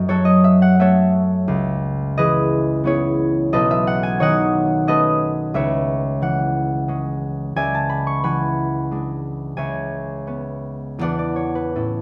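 Serene and dreamy, this short classical passage for solo concert harp is taken from a longer piece and lasts 12 seconds. The harp carries everything on its own, moving in a gentle three-beat metre with a flexible, rubato feel that lets phrases breathe. Its acoustic tone is warm and ringing, thumb-plucked and set up front, with close, detailed microphones catching each string across a range from B1 up to C#6. Light reverb adds a soft halo around the notes. The harmony drifts through lush seventh and ninth chords, from F#m7 through C#m7 and B9 to E9/C#, before settling on an open Esus2 at 11.0 seconds.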